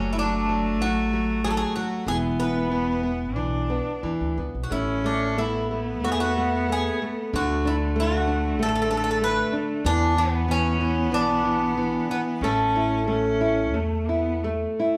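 A bright, metallic Greek bouzouki carries the melody up front, its picked double strings ringing with some octave doubling, while a rich, nasal cello bowed with vibrato sings a second line beside it. Beneath them a warm nylon-string guitar fingerpicks a classical accompaniment and a woody, thumpy upright bass plucks the low end, the bouzouki stopping at 14.4 seconds. This tender, nostalgic fado-style ballad in A major moves at 93 BPM with a loose, rubato feel, captured as a band playing live in one room and bathed in a lush large-studio reverb, cut from a longer piece.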